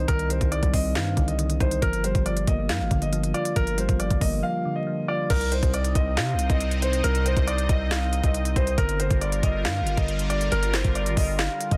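A distorted, saturated 808-style bass drives this menacing, melancholic half-time trap and hip hop cut, beneath a knocking trap kit with sharp snare, crisp hats, handclaps and crash, a natural-sounding grand piano melody trailed by tape echo, and round, chorused electric-piano-like synth keys that drop out at 5.3 seconds after a brief break from 4.4 seconds, when a bright, detuned, resonant pad with a filter swell takes over the sustained chords, the whole mix sitting in a dense, heavily limited master flecked with vinyl crackle.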